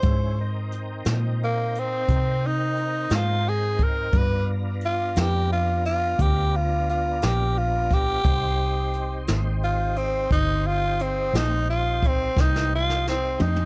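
Slow blues in C minor at 58 BPM in a brooding, mournful 12/8, built on a raspy, growling tenor saxophone solo up front over a dark, foam-muted fingered electric bass and a distant, roomy brush drum kit with a boomy kick that plays a fill from 12.4 seconds, while a smooth tonewheel organ holds quiet chords with key click, chorus vibrato and slow rotary speaker through Abmaj7, G7#9 and Cm in this dry, short cut from a longer piece.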